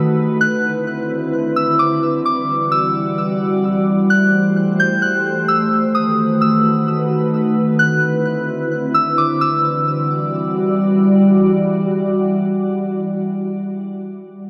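Spacious and hazy, this half-time hip hop excerpt at 130 BPM in E minor floats on a glassy, ethereal FM pad that sits up front with a slow attack and long release, its sustained chords thickened by ensemble chorus and built-in reverb as they move through Cmaj9, Em9, Am7 and B7. A soft, pure synth bell carries the melody high above from 0.4 to 10.8 seconds, its fast attack and gentle decay colored by chorus and digital delay. The whole is bathed in a huge, wet ambient reverb, and the piece shifts into a second section at 9.4 seconds, returning to Em9 before the pad ends at 13.9 seconds.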